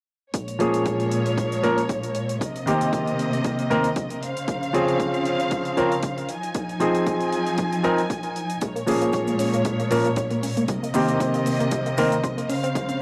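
A clear, intimate grand piano sits up front from 0.6 seconds, its action noise audible, playing accompaniment that pumps against the kick and trails a tape echo. Also up front, a lush, woody string section bowed with vibrato holds sustained chords from 0.3 seconds, dark in tone and also pumping with the sidechain. An electronic kick, layered and punchy with tape-softened weight and a high-pass filter, drives the groove alongside a natural small-room hi-hat, with a gentle swing on the sixteenths. At 8.6 seconds a round, nasal analog pluck joins in the background with sawtooth arpeggios, carrying chorus, phaser, tape echo and vintage 12-bit grit, while a close cabasa adds quiet shimmer. This groovy, cosmic nu-disco passage cycles through Bbm7, Cm7, Dbmaj7 and Fm7, with a gritty cassette and transformer-saturated character under light studio reverb.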